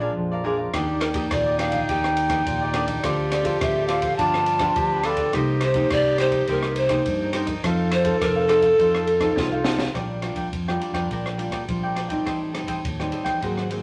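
A large, wet studio reverb with a 0.9-second tail surrounds this lively, sunny slice of samba and choro, cut from a longer piece and set at 104 BPM in 4/4 with a straight feel in Bb major. A breathy, hollow bamboo pan flute carries the melody up front, close-miked with a soft, chiffy attack and vibrato. A clear, classical-style clarinet joins at 0.7 seconds as a second line, along with an open acoustic jazz kit that has a high-tuned snare, boomy kick, ride cymbal and rim clicks. Underneath, a crisp picked cavaquinho and a dark, woody fingerpicked nylon-string guitar with old strings supply the accompaniment, while a round, amped fingered electric bass anchors the low end. The chords move through Ebmaj7, Dm7, G7, Cm7 and F7. The flute drops out at 9.6 seconds, and after a drum fill a new section begins at 9.9 seconds on Bb6 before turning to Am7b5.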